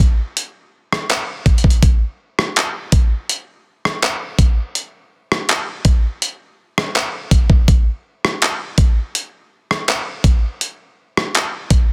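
A dusty, gritty soul drum kit with a thumpy kick, hi-hat, rim click and handclaps sits up front in this dreamy, smooth R&B excerpt, moving at 82 BPM in a straight 4/4 with a compressed, small-room sampler character, little reverb and a dense, heavily limited modern master across its 11.9 seconds.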